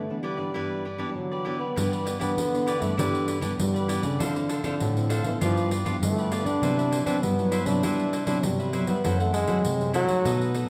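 Lively and sunny, this short excerpt of samba and choro in G major moves at 99 BPM in a straight 4/4, with a mellow trombone carrying the melody in a present, jazz-style solo voice full of vibrato and scooped notes. Beneath it, a warm, thumb-plucked nylon-string guitar and a bright, crisp picked cavaquinho provide accompaniment from the start. After a brief break, a dark, fingerpicked second nylon-string guitar with audible finger squeak takes the bass line and a jingly, close and dry pandeiro played with soft hands joins at 1.8 seconds, all set in the reverberant wash of a church or concert hall as chords such as G6, Cmaj9#11 and F#m7b5 pass by.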